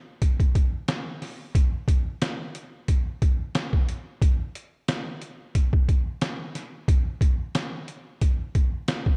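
A sampler-style trip hop drum kit enters at 0.2 s and carries this short hip hop cut on its own until it stops at 9.2 s, laying down kick, snare and hi-hat in 4/4 at 90 BPM with a light 16th-note swing. The mood is nostalgic yet confident, a groove cut from a longer piece. The kit sounds compressed, pitched down and gritty, with a thumpy kick and a medium-tuned snare sitting up front. It carries the character of drums re-recorded in a large room. The overall production is dark and warm, with very little reverb.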